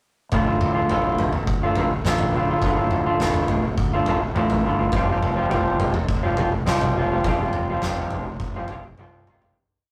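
Quiet-loud alternative rock in D minor at 104 BPM, this short piece carries a dark, cathartic mood through a single verse that moves from Dm to Fsus2 at 4.9 seconds. An electric guitar through a small old amp sits up front, picking arpeggios and strummed chords with a slightly broken-up, lo-fi, compressed tone. Beneath it, a fingered electric bass with fuzz and overdrive drives steady eighth notes from the background. An oversized low-tuned drum kit pairs a fat snare and boomy kick with grooving toms, all saturated and gritty in a bright, pumping stone-room sound. The whole performance has the rough feel of a rehearsal-room recording with tube saturation and a wet booth ambience, and it fades out from 7.2 seconds as a drum fill closes it at 9.0 seconds.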